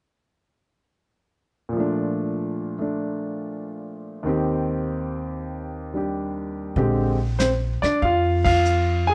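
Lightly reverberant and intimate, this playful, warm jazz piano trio clip in Bb major swings at 96 BPM in 4/4, tuned to A4 = 437 Hz. A clear, up-front concert grand carries the melody alone from 1.7 seconds over Bbmaj7 and Eb6 harmonies. At 6.8 seconds, a woody, thumpy pizzicato upright bass and a dark, smooth vintage kit join on Bbadd9, the kit played with brushes on snare, hi-hat, kick and ride. The full band hits an accent at 8.3 seconds.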